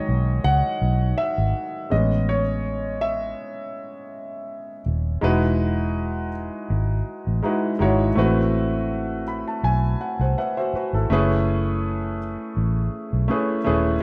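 A lightly swung 16th-note groove at 82 BPM in 4/4 drives this short, smooth and lush 1970s-style soul passage in E major, moving through jazzy chords such as Emaj7, Amaj7, Am6 and F#m11. An intimate concert grand piano, warm and natural with deep lows, audible action noise and a plate reverb, takes a solo through the first 5.2 seconds and adds a fill at 8.9 seconds. A dark, round, punchy muted electric bass sits up front alongside it in a small room, giving the rough home demo mix a vintage, amped character.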